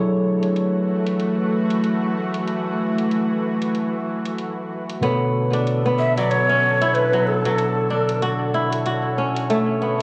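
A warm, mystical mood opens this organic downtempo excerpt, moving at 94 BPM in 4/4 with a light swing on the sixteenths and centred in B dorian. A clean tine electric piano, heard through a combo amp with a low-pass filter sweep and tape echo, shares the accompaniment with a string-like, nasal drone that sits up front, holding sustained chords with slow attack, vibrato and its own built-in reverb. An overdriven electronic hi-hat with metallic, filtered hats sits low in the mix from 0.4 to 9.6 seconds. At 5.0 seconds a bright, crisp kora joins with ringing fingerpicked arpeggios and tape echo, as the harmony moves from F#m7 to Bm7. A breathy, mellow Native American-style cedar flute carries the brief melody from 6.0 to 8.2 seconds, its wooden tone marked by chiff, rolled-off highs, vibrato and an unsteady quality, while the whole mix is washed in spring reverb and echo.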